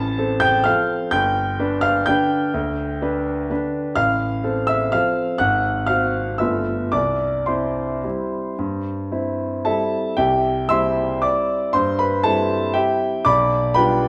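A solo concert grand piano, smooth and up front with a deep bass and a vintage character, carries this nostalgic, bittersweet classical waltz in 3/4 with a rubato feel, drifting through F/A, G and a colouring Ab7 at 5.4 s before settling on C and moving into a new section at 10.2 s that closes on G7/B, all in a dark production with moderate recital hall reverb and tuned to A4 = 437 Hz, in a short passage cut from a longer piece.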